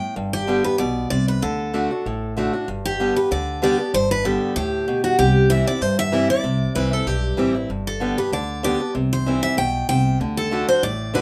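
A lightly swung 4/4 at 192 BPM drives this joyful bluegrass excerpt in G major, where a bright, full-bodied steel-string acoustic guitar picks the up-front melody with audible finger squeak, a boxy archtop guitar picks the accompaniment equally up front, and a woody, growly pizzicato upright bass enters at 0.2 s beneath them, all set in a moderate studio reverb.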